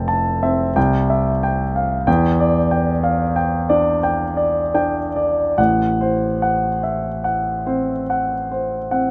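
Nocturnal and wistful, this brief excerpt of impressionist classical solo piano drifts in 5/4 with a rubato feel, its tempo moving between 69 and 96 BPM in A minor. A warm concert grand carries the whole 9.1 seconds alone, ranging from F1 to A5 with a deep bass and a natural, up-front presence, captured by close, detailed microphones in light reverb. Its harmony passes from Fmaj7 through C and Em7 before settling on Am6 at 5.6 seconds.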